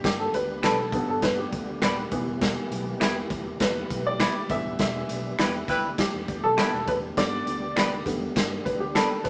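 A gritty, lo-fi excerpt of uptempo 1960s-style soul at 101 BPM in a straight 4/4, set in a moderate studio reverb, with a worn, woody, slightly detuned upright piano playing a present solo over G and E minor chords. A saturated, punchy garage drum kit sits up front while a growly fingered electric bass and a round tonewheel organ with fast rotary speaker, chorus vibrato and key click stay in the background. A slightly broken-up electric guitar through a small old amp adds stabs and a finger snap adds percussion from 0.6 s, and a jazz-style horn section enters up front for a brief second line at 5.4 s during a band accent, giving the uplifting mood a lift.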